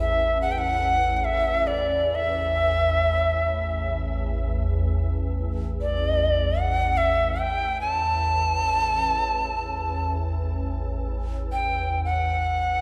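From the first moment, a breathy Native American-style cedar flute and a soft, organ-like pad sound together, opening a spacious, meditative world piece in free time. The flute carries the melody between D5 and A5, its woody tone marked by a gentle chiff, soft attacks and an unsteady vibrato. It sits close-miked and up front, trailed by shimmer reverb and delay. Beneath it, the pad holds a low drone from A1 to E2, pure and sine-like yet slightly detuned, with a slow attack, long release and a calm, sustained glow thickened by ensemble chorus and its own reverb. A concert hall reverb with a 2.2-second tail surrounds the parts in a dark production, and the passage is a 12.8-second slice cut from a longer piece.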